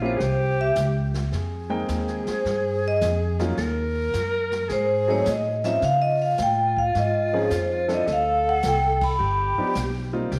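Ringing, metallic vibraphone with fast motor vibrato carries the melody up front in this swinging, late-night small-group jazz excerpt at 107 BPM, joined by a subtoned alto saxophone with scooped notes on a second line, a warm baby grand piano comping, a woody, dark pizzicato upright bass, and a brushed drum kit with dark cymbals and a boomy kick, all bathed in a wet echo-chamber reverb, with a band accent at 8.9 seconds.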